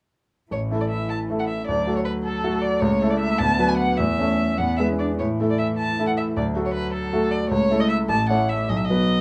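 In a 6/8 at 103 BPM with a rubato feel, this cheerful, spirited excerpt from a classical-period piano trio movement in A major sets a veiled, con sordino violin melody with vibrato up front over a clear concert grand piano accompaniment with deep bass and short sustain, while a dark, muted cello traces a second line in the background, all three playing together from 0.5 to 9.2 seconds in light reverb.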